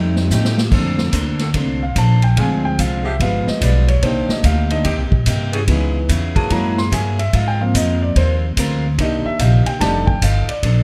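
This energetic big band swing clip opens with a brief muted trombone figure, veiled by bucket mutes, over a boxy picked archtop guitar and a woody, growly upright bass that sits up front. A drum fill arrives at 0.3 s from a kit with a punchy kick and a medium-tuned snare in a big room. At 0.7 s a grand piano takes a solo that carries through to the end, sounding intimate and up front, with audible action noise and long sustain. Behind it, a saxophone section holds smooth, soft-attacked chords with vibrato until 6.9 s, returning for a moment near the close. The harmony moves through rich extended chords, including Bbmaj9, G7b9 and Gb9, before landing on F13, and light reverb adds a touch of space.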